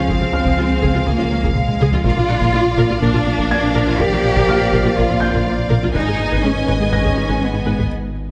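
The cello section stands up front in this brooding, futuristic stretch of hybrid orchestral and electronic film score, its bowed, expressive vibrato carrying the low line over a straight 123 BPM pulse in 4/4. Above it, a smooth symphonic violin section holds the melody, while a lush, distant second violin line, a close viola section with soft attacks and portamento, and a woody double bass section fill in behind. A dark, roomy French horn section and a very quiet trombone section sustain chords, joined by a very quiet ethereal pad with a detuned, phaser-tinted tone. On the electronic side, a glassy, crystalline wavetable pluck runs arpeggios with a filter sweep and chorus, a rubbery, wave-folded square bass plays a very quiet riff, and a round sine sub bass anchors the bottom, while a felt-muted upright piano adds boxy, intimate high texture through a digital delay, its action noise audible. 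A close, dry taiko ensemble struck with heavy sticks drives the rhythm with a fill at 1.6 seconds, the harmony moving from Db to Bb and then Abm at 5.9 seconds, before a break at 7.9 seconds, with a huge, dark reverse cymbal arriving at 8.2 seconds, all set in a moderate scoring-stage reverb.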